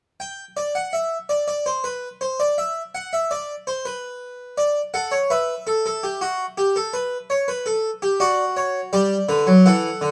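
The recording places a full-bodied, Flemish-style harpsichord up front, its two sets of plucked strings ringing in a light reverb. This is a short cut from a longer baroque-style classical piece, a three-part fugue for solo harpsichord in 3/4 at 82 BPM with a straight feel. The mood is joyful yet stately, and the instrument spans D3 to G5 across the passage, which runs from 0.2 to 10.1 seconds. Harmony settles onto D at 4.6 seconds, then moves through Emadd9/F#, A7 and D/F# before arriving on G at 8.9 seconds.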